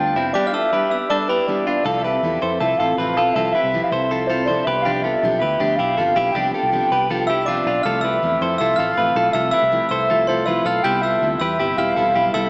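A warbly, nostalgic lead with chorus and tape echo carries the melody from the start of this breezy, youthful indie pop excerpt. It sits over a fingerpicked, full-bodied steel-string acoustic guitar, twangy clean electric guitar arpeggios in spring reverb, and a round, foam-muted electric bass. A sparkling glockenspiel struck with brass mallets adds a bell-like second line through tape echo, dropping out at 1.6 seconds and returning at 7.3 seconds, as the chords move from G through Fmaj7 and G7 toward Cmaj7 in a dreamy mix soaked in lush hall reverb with a small-speaker sound.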